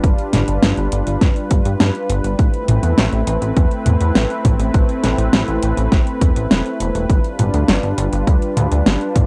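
This nostalgic, moody synthwave fragment opens with everything arriving together: a punchy, overdriven electronic kick and a pop drum kit with a fat snare, metallic hats and toms, both up front and layered. Alongside them, a chorused synth bass mixes pulse and sawtooth waves with pulse-width modulation, giving a glossy, nasal, retro tone with a filter pluck and sidechain pumping. A smooth analog pad of detuned sawtooth holds sustained chords with a slow attack and long release, sitting mellow and lower in the mix under its chorus. The harmony moves from G7 to Amadd9 at 2.4 seconds and back to G7 at 7.1 seconds over the straight 4/4 groove. The drums carry a cassette-tape grit and the tight ambience of a small booth, lending the whole 9.3-second cut a homemade, tape-worn character.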